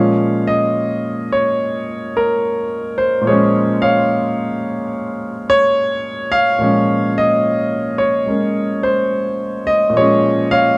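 A concert grand piano carries this short solo jazz fragment on its own, sitting up front with a deep, natural bass register that reaches down to Bb2 and climbs as high as F5. The mood is late-night and moody, with an unhurried swing in 4/4 that lends the phrase a relaxed, laid-back lilt. The harmony rests on a single minor seventh chord throughout, giving the passage a brooding, suspended quality. A light reverb surrounds the instrument, and the overall production leans dark and warm. Lasting just 10.8 seconds, the clip is cut from a longer piece and plays as one continuous section.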